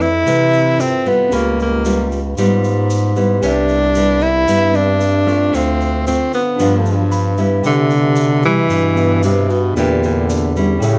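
Bossa nova at 114 BPM in C major, relaxed and sophisticated, cut from a longer piece: an up-front, breathy tenor saxophone carries the melody with vibrato, subtone and scooped notes, bathed in plate reverb, over thumb-plucked nylon-string guitar with fresh, full-bodied strings and a worn, slightly out-of-tune tine electric piano heard through a combo amp in the background. A mellow, close-miked bass clarinet holds the bass line with light vibrato, while a grainy, bright tube shaker sits distant in a large room, all within a touch of room reverb. The electric piano adds a fill at 6.9 seconds, and at 7.6 seconds a dark, very quiet trombone enters as a second line as the chords return from Fmaj7, Db7#11, Dm7 and G7 to Cmaj7.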